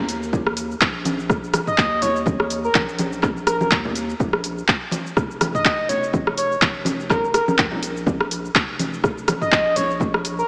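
A driving, swung afro house groove at 124 BPM in Bb minor opens with a round, dark analog bass pumping under an up-front deep house kit of metallic hats, handclaps, cabasa, rim clicks and toms, a deep tape-warm electronic kick and ringing congas tucked in the background, before a smooth, expressive sawtooth synth lead with chorus, vibrato and tape echo enters at 1.7 seconds, all set in a dreamy, reverb-soaked hall with a small-speaker sound in this short cut from a longer piece.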